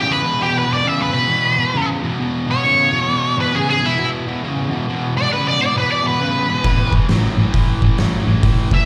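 An octave-fuzz lead guitar, dark and up front with wah and slapback echo, carries the melody over a cranked, double-tracked stack guitar riff in this gritty, raunchy swung blues rock and southern rock excerpt at 135 BPM, moving from E5 to A5 as a round, foam-muted vintage bass and an oversized low-tuned drum kit with a fat snare and punchy kick join at 6.6 seconds, all heard as a live gig through the venue's PA with recital hall reverb.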